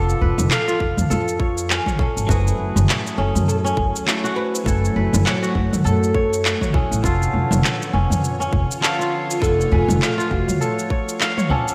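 A woody, up-front upright bass stands out in this short cut from a longer organic downtempo piece in F# minor, its pizzicato line growly and thumpy with sidechain pumping, moving at 101 BPM with a loose sixteenth-note swing and an earthy, warm mood. Above it, a fretless, plectrum-plucked oud carries the melody with a deep, double-string tone and delay, while a bright, fingerpicked kora rings out crisp arpeggios. A clean, twangy electric guitar with a scooped, compressed sound adds picked accompaniment, treated with delay and sidechain pumping. The rhythm comes from a produced organic electronic kit of cabasa, handclaps and toms with gated reverb, a tight electronic kick, and a deep udu sitting in the background. From 3.1 seconds a tense, detuned, sawtooth string-like drone slowly swells in with vibrato and a noise layer, holding sustained chords behind everything over F#m9 and the return to C#7b9b13/E#. 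The mix has a bright 1980s-style digital sheen and a lush hall reverb.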